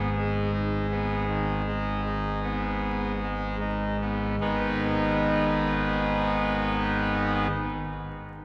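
A straight 4/4 pulse moves at a slow 37-41 BPM and slows down over the first 4.4 seconds of this dark, grave, chorale-style classical fragment in G# minor, tuned to A4 = 436 Hz. A solo pipe organ on its trumpet stop plays from 0.0 to 7.5 seconds, spanning G#1 to B4 with a brassy, bright baroque voicing and audible chiff, sitting up front in the mix. Around it, a cathedral reverb with a 4.5-second tail blooms as though heard from further back in the room, while vinyl crackle adds an aged surface to this piece cut from a longer work.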